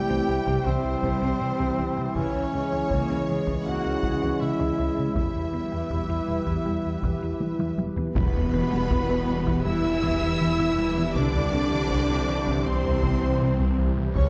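A warm duduk opens this brooding, futuristic hybrid of orchestral and electronic film scoring, singing a folk-style melody with vibrato and scooped notes. A focused, lush violin section carries a second line, while violas fill in richly in the background. Beneath them, mellow French horns, clear trombones and a hollow, airy pad with chorus hold sustained chords, and a woody FM synth pluck plays very quiet arpeggios. A smooth, gliding synth bass with portamento plays a riff over very quiet cello and double bass sections, as a close, dry taiko ensemble plays with heavy sticks in the background. The duduk stops at 7.7 seconds, and a drum fill from 7.4 seconds leads into the second half at 8.2 seconds, where a dark, expressive violin section carries the melody, a snarling, growling distorted saw bass enters, and a huge, bright impact sounds. A wet scoring-stage reverb gives the whole piece a cinematic sense of space.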